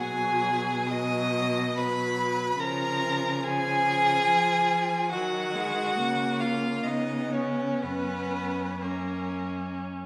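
Lyrical and warm, this short passage from a slow romantic movement for string quartet unfolds in triple time with a flexible, rubato feel. A single violin with a rich, focused tone and vibrato carries the melody high above the group, while a second violin, clear and up front, sings its own line beneath it. The viola fills in the accompaniment with a full-bodied, bowed sound, and the cello anchors the bass with expressive vibrato and portamento. The two violins finish at 9.8 seconds, leaving viola and cello to sound until 10.1 seconds. A lush recital-hall reverb surrounds the quartet, lending the performance a glowing sense of space.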